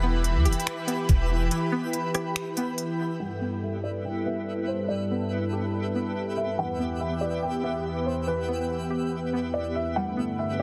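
A detuned sawtooth analog pad with sidechain pumping holds sustained chords through this dreamy, blissful half-time excerpt of atmospheric cloud-rap, joined by a twangy, phased resonator pluck playing arpeggios in the background, a sparkling granular texture with an octave-up shimmer, a deep, round 808-style bass and a knocking trap kit of kick, crisp hi-hat, finger snaps and rim clicks that stops at 2.9 seconds, before a mellow felt-muted upright piano carries the melody from 3.2 seconds in light digital ambience within a dense, heavily limited master.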